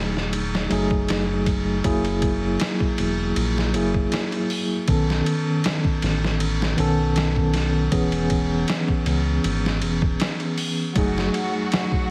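Smoky and dark, this trip hop excerpt puts a mellow tine electric piano up front, its tremolo and tape echo shading chords that move from F#m69 through B9 and E6. Beneath it sit a round, deep analog bass with a ring-modulated edge, which stops at 11.3 seconds, and a gritty, pitched-down sampler-style drum kit with a thumpy kick and lightly swung sixteenths, re-recorded in a small room. At 11.0 seconds a focused, bowed string section arrives with vibrato, and the mix carries a heavily compressed radio sound dusted with vinyl crackle.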